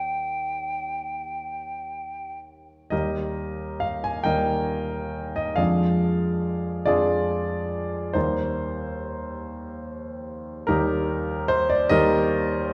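Tender and serene, this romantic classical duo in Eb major drifts in a rubato 12/8 at about 41-49 BPM, as an airy, hollow concert flute with vibrato and a crisp attack sings its melody on G5 only until 2.4 s, while a clear, intimate grand piano, present and polished with long sustain and audible action noise, carries the accompaniment from Eb2 to Ab5 through 12.7 s, the duo sitting in a moderate scoring-stage reverb within a dark production.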